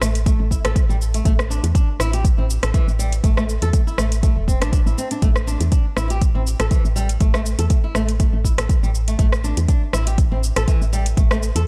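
A deep, layered electronic kick drum sits up front in this hypnotic, spiritual afro house cut, entering at 0.3 seconds and holding a steady 121 BPM pulse in 4/4 with a light 16th-note swing until 11.3 seconds. Beneath it, a woody FM bass with a soft, round, dark tone and a fast, decaying attack fills the low end in A minor, thickened by tube saturation and pumping with the sidechain. An electronic, tape-warm afro-pop kit adds metallic hi-hats, rim clicks and shaker. Over this, a fingerpicked acoustic flamenco guitar plays arpeggios over an A5 chord, carrying a digital delay and its own sidechain pumping. The dark production is wrapped in digital ambience, and the piece is a short section cut from a longer track.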